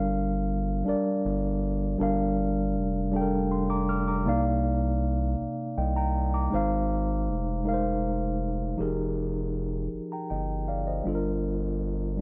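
A mellow, clean tine electric piano sits up front in this slow, sultry six-eight R&B cut at 53 BPM, tuned to A4 = 436 Hz, moving through yearning chords from Gm7 to Cm11, Ab6 and then Fm11 when a new section begins at 8.8 s, before returning to Gm7. Beneath it, a deep, round analog bass with a wave-folded, evolving tone and a fast attack holds the low end throughout. The sound is dry and close, like a 1970s studio, with a light touch of reverb.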